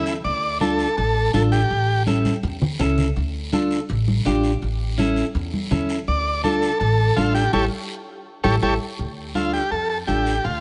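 A buzzy, heavily vibrato-laden combo organ leads this fiery, danceable cumbia fragment in D harmonic minor at 165 BPM, carrying the melody over a clean, picked electric guitar and a woody pizzicato upright bass up front, with raspy guiro and bright, hard-handed congas close and dry in the mix. The organ drops out at 2.0 seconds and returns at 6.1 seconds, while the band hits an accent from 7.5 seconds before moving into a new section. The harmony rocks between Dm, A and A7, and the whole mix sits a little further back in the room under a moderate plate reverb with a softened top end.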